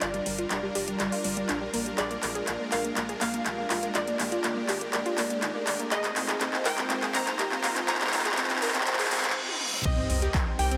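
An emotional, expansive stretch of progressive house, this 10.8-second excerpt is a build-up that gathers toward an impact at 9.9 seconds. A bright, detuned supersaw pad holds slow-attack chords under a sidechain pump, while a round, deep analog bass anchors the low end and a warbling, vintage-tinged analog pluck spins arpeggios through chorus, tape colour and delay. Up high, a punchy, catchy unison lead carries the melody in the background with lush chorus and delay, shadowed by a pure, mellow FM bell that is very quiet. Both the pluck and the lead sit under a filter sweep across the build, and the overdriven deep house kit stays up front with metallic hats, handclaps, toms, ride and crash, rolling through drum fills. A quiet riser, reverse cymbal and sub drop come in at 1.7 seconds, and a punchy, overdriven electronic kick arrives with the impact, all set in a lush hall reverb over chords moving from Gm7 through Bb7 and Fm7 to Cm7.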